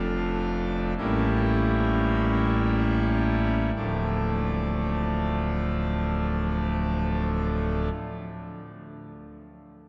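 Solemn and dark, this brief cut from a longer classical chorale-style piece in D minor unfolds in free time, slowing down through its opening 3.7 seconds. A solo pipe organ on full organ with mixtures sits up front, majestic and brilliant in a romantic voicing that spans from a deep D1 up to F4, moving from Dm/F through A7b9 to a Dm arrival at 3.7 seconds before it stops at 7.9 seconds. A cathedral reverb with a 5.9-second decay surrounds the dark, warm production, letting the sound hang in the vast space.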